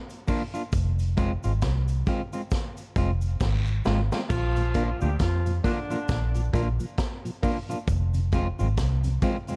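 A laid-back, uplifting roots reggae excerpt opens with a vintage drum kit, its tight kick and dark cymbals up front, alongside distant cabasa and guiro in the background. A slightly broken-up electric guitar with tape echo and a round, foam-muted fingered bass soon join. After a drum fill, a clear horn section with light vibrato and tape echo plays a brief second line from 4.3 seconds, while a mellow tonewheel organ with key click and slow rotary speaker settles into the background from 4.6 seconds, over chords that sway between Bb and Fm in a warm, dry production.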